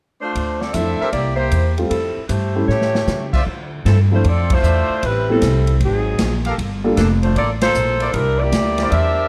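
Brassy and swinging, this big band jazz clip in D minor moves at 154 BPM with a swung feel, led by a clear, smooth-topped saxophone section carrying the melody up front over a woody, thumpy pizzicato upright bass. An airy, polished drum kit with a punchy kick keeps time, a natural-sounding baby grand piano accompanies until 7.0 seconds, and a bright trumpet section with soft attack and light vibrato adds stabs. A drum fill at 2.7 seconds leads into the second section, where band accents land at 4.4 and 7.5 seconds, with light reverb and a dark, warm production.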